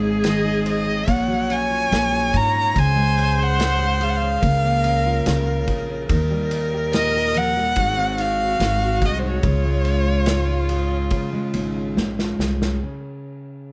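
Tender and hopeful, this acoustic folk-pop ballad excerpt carries a dusky, expressive bowed violin melody with vibrato and portamento up front over a smooth, distant viola second line, a full-bodied fingerpicked jumbo steel-string guitar with old strings, a woody, thumpy pizzicato upright bass on gut strings, and a loose indie drum kit with a punchy kick and dark cymbals in a pumping studio room, set in light reverb and capped by a drum fill at 12.0 seconds.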